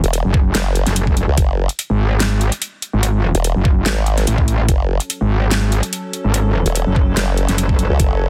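A dense, heavily limited and fairly dry mix drives this aggressive, chaotic half-time wobble dubstep excerpt, where a distorted, FM-driven metallic wobble bass and an up-front formant-sweep wobble bass with chorus and overdrive play together, a knocking, tape-warm electronic kick and a dubstep drum kit with a huge snare and hi-hats hit under studio reverb, and an evolving, detuned wavetable pad with sidechain pumping morphs in at 5.0 seconds.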